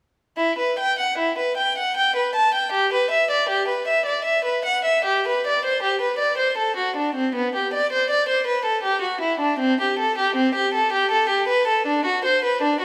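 A lone bowed violin enters at 0.4 s and sings up front in a rich, vibrato-laden voice, its soft attacks and portamento lending an expressive quality to this solemn, introspective baroque-style suite movement in 3/4, played with free rubato. The single player ranges from B3 to A5 until 12.8 s, and a recital hall's lingering reverb, about 1.7 seconds long, surrounds the line in this excerpt from a longer piece.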